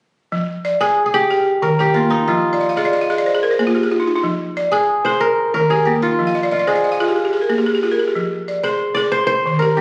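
Set in 12/8 with a straight feel, this West African traditional fragment, cut from a longer piece, has a reflective, hypnotic mood. A balafon opens at 0.3 seconds with arpeggios struck with hard rubber mallets, its woody, dry tone carrying a distinct buzz, and it adds fills starting at 2.5 seconds and again later on. The kora joins at 0.8 seconds with a fingerpicked melody that sounds bright, crisp and ringing, and both instruments sit up front in the mix. The harmony circles through Fm, Eb and Bb5 in a repeating loop that deepens the trance-like quality. The sound was captured on a phone in a moderate recital hall with club-style reverb, so the space feels roomy while the top end is noticeably rolled off.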